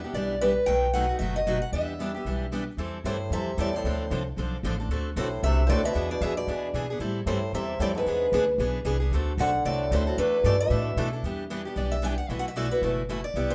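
A moderate studio reverb gives this short cut from a longer jazz manouche piece a modest sense of room around its acoustic strings. At a brisk 227 BPM in A minor with a swung feel, the mood is bittersweet and virtuosic, moving through minor-seventh and dominant changes such as Em7, B7, Am7 and E7. A bright, boxy picked steel-string guitar carries the melody up front with fresh-string sparkle, while two more picked guitars comp beneath it, one parlour-sized and the other auditorium-toned, both letting finger squeak slip through. An up-front upright bass on gut strings anchors the harmony with a woody, thumpy, dark pizzicato. From 3.1 s to 11.1 s a bassoon adds a classical second line in its low register, with light vibrato and a present, warm tone. At 11.2 s the lead guitar steps into a solo over Em7 and B7sus4 as the passage is cut off.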